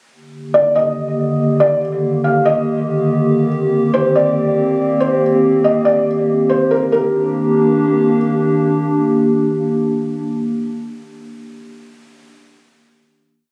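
A warbly, tape-like pad opens this short, floating hip hop piece at 0.1 s, holding sustained chords through a detuned, nostalgic lo-fi haze with chorus and its own reverb, its slow attack and long release giving it a dark, blissful glow. At 0.5 s a felt-muted upright piano joins up front with a sparse looping melody, soft and intimate under thick felt, repeated like a sampled loop and trailed by tape echo. The groove sits at 141 BPM in 4/4 with a half-time feel, in Eb major, moving from Ebmaj7 to Cm7 across the verse before returning to Ebmaj7 at 6.9 s for a final chord. The piano stops at 8.2 s, and the pad rings on alone until 11.1 s. The whole recording sounds captured on a phone in a club, with room ambience, compression and a moderate, lush hall reverb lending a floating space.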